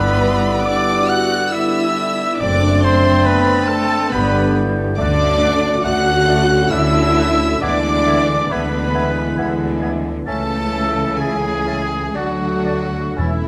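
A slow, serene romantic orchestral passage in three, played with rubato, opens with a rich chamber violin section singing the vibrato-laden melody close to the listener, while a very quiet, lush second violin section, a mellow clarinet, an airy silver flute and a distant, roomy oboe weave secondary lines behind it. Underneath, a close, expressive viola section and a solo bassoon supply accompaniment, the trombone and French horn sections hold sustained chords, a solo trumpet adds stabs, and smooth, even cellos join the double bass section on the bass line. The whole ensemble sits in a moderate scoring-stage reverb, and at 13.2 s a crisp, dry timpani stroke with hard mallets lands up front just as the cut from the longer piece ends.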